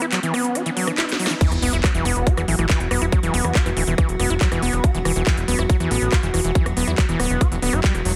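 A squelchy, gritty overdriven acid bass drives this hypnotic, alien psychedelic trance excerpt at 140 BPM, its resonant, saturated riff pumping under sidechain with delay, while a detuned, morphing wavetable pad holds bright chords with chorus and reverb in the background. After a brief break where a layered kit with cracking snare, crisp hats, handclaps, rim clicks and crash plays a fill and a very quiet riser and sub drop sound, the drop lands at 1.4 seconds with a tight, up-front electronic kick and a punchy, funky plucky analog bass with ring-modulated bite. The dense, heavily limited master sits in light digital ambience.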